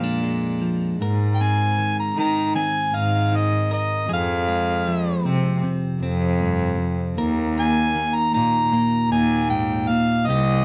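A clear, punchy harmonica carries the melody up front in this hopeful, intimate folk-pop ballad, a short excerpt cut from a longer piece. Beneath it, a single close cello plays the bass line, bowed sul tasto with a soft attack and an airy, floating tone, while a clean, compressed electric guitar supplies picked accompaniment. A light reverb surrounds the trio, and the harmony settles into a new passage at 1.0 s that moves through Abadd9, Fm and Eb5.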